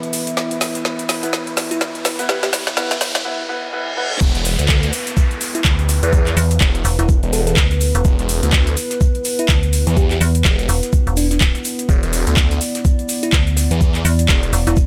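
Bass house with a gritty, aggressive, swung feel, cut from a longer piece: a build-up opens with a moody analog pad, a nostalgic, warbling tape-like pad, bright grand piano stabs with dub echo, a brief bell-like FM electric piano phrase, and overdriven garage drums with woody snare and metallic hats, while a riser, reverse cymbal and downlifter sweep toward the drop at 4.2 seconds. There a knocking, overdriven electronic kick and a thick, swirling phased saw bass arrive up front, a very quiet, dry 70s kit adds muted shaker and snare, and the FM electric piano returns in the background with chorus, phaser and echo. At 5.6 seconds a tube-saturated, metallic, digital FM bass joins the pumping low end, all set in a small room ambience.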